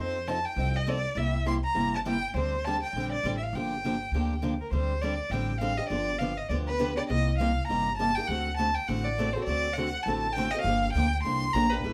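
A bowed violin, picked acoustic guitar and upright bass all sound together from the start of this fiery, virtuosic fragment of acoustic string swing in the gypsy jazz tradition, driven by a quick swung pulse. The single violin carries the melody with a smooth, even tone and vibrato, placed up front yet with a slightly distant air. Beneath it, the steel-string guitar supplies a boxy, parlour-sized accompaniment, while the plucked bass on gut strings gives a woody, thumpy, dark foundation. The harmony opens on F7 and C7 before settling onto Gm7 around 3.5 seconds, then a second passage from 4.7 seconds moves through D7sus4, G7, Cm7 and D7 back to Gm7. The trio is heard through a light reverb.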